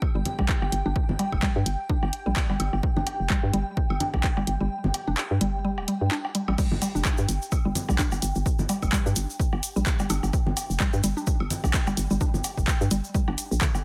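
An electronic kick drum, woodblock and congas, and a granular cloud pad holding a high G open this clinical, sparse minimal techno excerpt in G minor at 128 BPM, with a 57% swing on the 16ths. The kick is punchy and tape-warm, sitting up front, while the woodblock and congas carry an analog delay and the roomy sound of a large space. A hollow, bouncy FM bass knocks along in the low register, joined by a woody, nasal mallet-like synth pluck riff coloured by chorus and tape echo, both pumping against the kick along with the blurred, evolving pad. A punchy analog drum machine adds crash cymbal, handclaps and hi-hat. The kick drops out from 4.7 to 6.6 seconds, and at 6.6 seconds a grainy, bright tube shaker enters. Light reverb and a digital ambience frame the mix.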